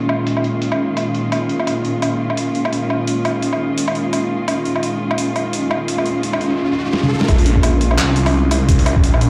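A muted cello section opens this cinematic, heavy half-time drum and bass excerpt, bowing veiled, con sordino chords with light vibrato and a soft attack, roughened by vintage sampler grit and pumping against a sidechain. Almost at once a boom bap sampler-style kit joins beneath it, pitched down and overdriven, with handclaps, hi-hat, woodblock, toms and a high-tuned snare, all muffled by low-pass filtering and carrying a loose, swung sixteenth-note feel. An electronic riser sits in the background from 5.6 seconds, and a drum fill arrives at 6.9 seconds. The drop lands at 7.3 seconds, when a thick, swirling detuned saw bass comes up front under a phaser, joined by a thumpy, tape-tinged electronic kick. A lush hall reverb and a large studio ambience give the whole mix the boom of a big sound system in a bare room.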